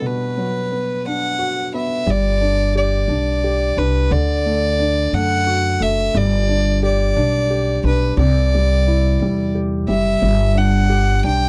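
A bowed solo violin, rich and pure with a soft attack and floating sul tasto tone, carries the melody over a polished, present baby grand piano in this swaying, romantic pop ballad, cut from a longer piece, in G major at 59 BPM in 6/8. The piano adds a fill from 1.0 to 2.1 seconds. Then a woody, thumpy upright bass enters with pizzicato notes at 2.1 seconds, sitting up front alongside the violin in a dry, close 1970s-style studio sound.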